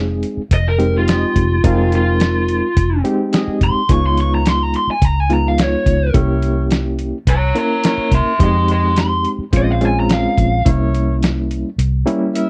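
Straight-eighth soul blues in F minor at 106 BPM, soulful and mournful, where a dark, overdriven lead guitar through a small cranked amp carries the melody with slapback echo from 0.5 seconds over a reedy, gritty electric piano pulsing with fast tremolo and a round, foam-muted fingered bass. A muffled, pitched-down sampler-style drum kit with a thumpy kick and overdriven crunch drives the groove, while a loose horn section with vibrato holds sustained jazz-style chords lower in the mix through changes like Fm9, Db7 and C7b9. The dry, close 1970s-style sound keeps every part but the horns up front, and the kick and snare drop out at 11.8 seconds near the end of this excerpt cut from a longer piece.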